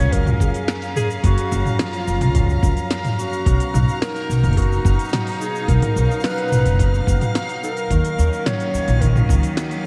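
A woody, growly pizzicato upright bass sits up front in this pastoral folktronica excerpt, beneath a muffled, thumpy electronic kick and a minimal click kit of tiny snare, clicky hats, cabasa and toms, while thumb-plucked concert harp arpeggios ring out, a close string quartet holds bowed vibrato chords, a smooth jazz-style clarinet with scooped notes carries the melody through diffuse ambient delay, and a reversed, detuned, granular texture shimmers brightly overhead, the dreamy mix bathed in lush hall reverb and vinyl crackle.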